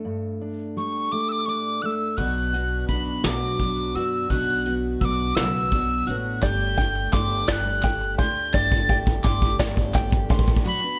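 This indie folk excerpt moves in a slow, lilting 6/8 with a straight feel, its mood yearning and bittersweet. A full-bodied, fingerpicked steel-string acoustic guitar opens up front, and an airy wooden whistle enters at 0.8 seconds to carry the melody with a soft, chiffy attack, a slightly unsteady straight tone and a slapback echo. At 2.2 seconds the arrangement begins to build as a shimmering, octave-doubled twelve-string guitar, a woody pizzicato upright bass and a roomy brush drum kit with a punchy kick come in, the drums playing a fill across this stretch. The fingerpicked guitar drops out at 6.4 seconds, where a boxy, slightly detuned upright piano sits in the background alongside a twangy, plunky open-back banjo playing arpeggios, a grainy egg shaker and hollow, dry group handclaps. The whole piece rests in a natural studio ambience, with the harmony moving from Gsus2 to Bm and back to Gsus2.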